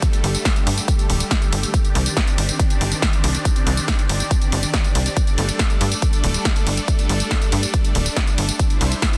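A straight 4/4 pulse at 140 BPM drives this soaring, euphoric slice of uplifting trance, cut from a longer piece. A layered, punchy electronic kick sits up front, joined by a tape-warm analog drum machine whose hi-hat, ride cymbal, snare and tambourine carry a small-room character. A tight sequencer bass enters at 0.2 seconds, its nasal sawtooth and square-wave tone plucked by a fast filter attack that decays quickly, driving and evolving with sidechain pumping. Above it, a lush, full-bodied supersaw pad of detuned unison voices holds sustained chords with slow attack and long release, treated with phaser and its own sidechain pumping, moving from Gsus2 to Cmadd9, back to Gsus2 and closing on Cadd9. A barely audible downlifter passes between 0.1 and 1.7 seconds. The mix is dry and dense, with a heavily limited modern master.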